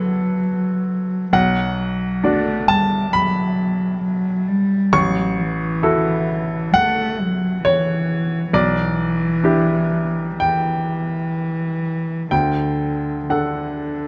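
Neoclassical piano and strings, reflective and melancholic, moving at a slow, rubato pace with uneven beats through a fragment cut from a longer piece. A bright, woody upright piano with short sustain carries the accompaniment up front across its full span, while a single warm cello plays an intimate second line with light vibrato, a soft attack and an airy sul tasto bow. Close, detailed microphones capture both instruments, set in a moderate large-studio reverb as the harmony turns from D through B minor and back to D by 12.3 seconds.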